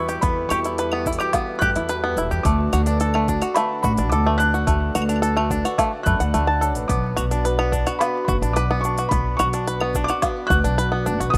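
Folktronica in B minor at 108 BPM in a straight 4/4, this short cut from a longer piece feels delicate and wistful, moving through Em, D and Bm. A felt-muted upright piano carries the melody high in its range, its soft, intimate tone touched with delay, while a pedal harmonium breathes reedy sustained chords in the background. Up front, a twangy bluegrass banjo played with fingerpicks spins percussive arpeggios through its own delay, and a pizzicato upright bass with gut strings gives a thumpy, woody low end. A marimba with soft mallets adds a round, mellow second line from 0.1 seconds, close-miked and dry with a touch of delay, sitting in the background. An organic electronic drum kit of cabasa, claves, smooth hi-hat and a woody snare joins at 0.1 seconds, with a deep, tape-warm electronic kick from 0.2 seconds, both re-recorded in a small room, all within a rough home-demo mix of light studio reverb and vinyl crackle.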